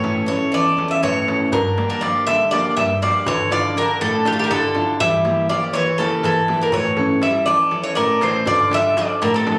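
Captured on a phone in a small club room, this driving, tense Greek folk clip at 242 BPM in eighths and 7/8 sets an up-front, bright bouzouki melody with metallic double strings, slapback echo and plate reverb over a second, lower bouzouki line, a full-bodied picked dreadnought guitar and a crisp, deep metal-shell darbuka struck with hard hands, moving from A through Gm, Dmadd9 and Edim and back to A before shifting to Dm at 8.5 seconds.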